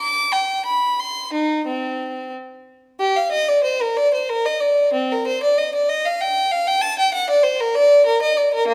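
A clear, bowed solo violin carries this short cut from a longer classical work, a baroque-style suite movement for unaccompanied violin in 3/4. The mood is grave yet flowing, with a rubato feel hovering around 88-98 BPM and tuning set to A4 = 435 Hz. The single player sits close and up front, drawing a smooth, even tone with vibrato across a range from Bb3 up to D6. The opening phrase occupies the first 3.0 seconds, and the same material returns from 3.0 to 8.7 seconds. A wet recital hall reverb, with a decay of about 1.6 seconds, surrounds the instrument and lends the lines a spacious, resonant glow.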